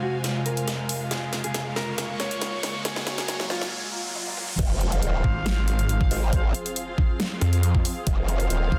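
A half-time 4/4 pulse at 138 BPM drives this menacing, heavy wobble dubstep excerpt in F phrygian: a mellow, clean electric guitar melody with delay, an evolving, morphing wavetable pad with sidechain pumping, dark, woody bowed strings, background risers and overdriven drum-kit fills with a huge snare and bright hats build from the start until the drop at 4.6 seconds, where a knocking, up-front kick, a wobbling, detuned growl bass, tight brass stabs with delay and, from 5.2 seconds, a snarling, resonant sawtooth bass hit hard in a dense, heavily limited mix.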